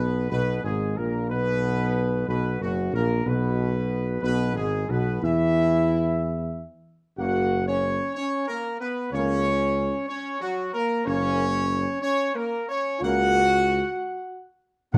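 Majestic and regal, this classical brass passage moves at a stately 62 BPM in 4/4, cut from a longer piece and tuned slightly below standard pitch. A clear trumpet section carries the melody up front between F#4 and F#5, while a French horn section with light vibrato supplies sustained chords beneath it. A trombone section, warm yet distant and roomy, fills out the lower harmony, and a mellow solo tuba with a smooth top anchors the bass from F#1 to E2. The harmony moves from B5 to E at 3.3 seconds and to F# at 7.2 seconds, and a single close, dry timpani stroke on B2, struck with hard mallets on calf heads, lands at 14.9 seconds. A moderate large-studio reverb and a dark production give the ensemble a rich, dignified sheen.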